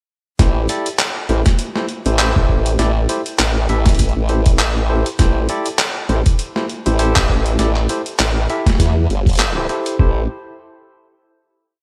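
A swung 16th-note groove at 100 BPM in 4/4 drives this funky, playful glitch hop piece in A minor, where a thumpy, pitched-down electronic kick sits up front beneath a gritty sampler-style kit of high-tuned snare, closed hi-hat and handclaps with gated reverb and edits in the beat; a formant-sweep wobble bass of pulse and sine tones with chorus shifts its wobble speed through modulated phrases, and a barky, lightly overdriven tine electric piano plays a close-voiced chord riff in stabs over Am7, carrying 12-bit sampler grit, sidechain pumping and digital delay, the whole set in a bright 1980s-style digital production with light reverb and lossy artefacts, the drop running from 0.4 to 10.0 seconds before a final chord closes the piece at 11.8 seconds.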